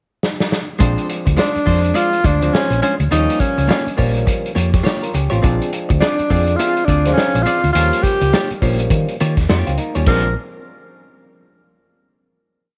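Funky and gritty, this short piece opens with a drum fill on a vintage kit with dark cymbals and a punchy kick, then settles into a tight sixteenth-note groove where a round, hollow-body fingered bass plays a syncopated riff with ghost notes, a clean, compressed electric guitar adds muted-scratch rhythm, an overdriven clav fires stringy stabs through a phaser, and a breathy tenor saxophone enters at 1.4 seconds with scooped, hook-like phrases before the band lands on a final chord at 10.1 seconds in a small, lightly reverberant room.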